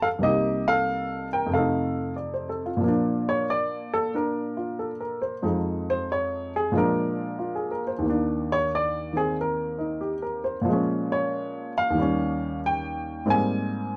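A baby grand piano sits up front in this playful solo jazz fragment, cut from a longer piece, swinging in 4/4 at 92 BPM in Bb major and tuned to A4 = 444 Hz. Its sound is intimate and natural, with short sustain and audible action noise, spanning C2 to Ab5 in a dark, warm production with light reverb. After a brief opening over Cm7 and F7, the piano moves into a featured solo at 2.8 seconds, passing through Fm7, Bb7, Bbm7 and Eb7 before landing on Abmaj9 at 13.3 seconds.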